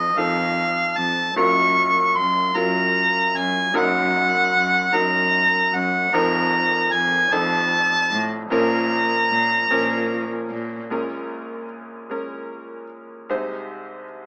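This rough home-demo recording has an AM-radio sound, with moderate studio reverb around the players. It is a reflective, heartbroken acoustic folk-pop ballad in B-flat minor, moving slowly in 6/8 at 50 BPM (dotted quarters) with a straight feel, tuned to A4 = 435 Hz. Up front, a solo harmonica carries the melody in a classical style; its tone is warm yet distant and roomy, with a light vibrato. Beneath it, an upright piano provides accompaniment with a bright, woody and slightly detuned sound, its action noise audible and present. A single bowed cello plays sul tasto for the bass, airy and close, with a similar gentle shimmer of vibrato. The harmonies pass through F7, Gbmaj7 and F7sus4 before settling on B-flat minor. Then the harmonica drops out at 10.5 seconds and the cello at 10.8 seconds, leaving the piano alone on Bbm7 and Ab/C until the cut at 14.3 seconds, since this passage is taken from a longer piece.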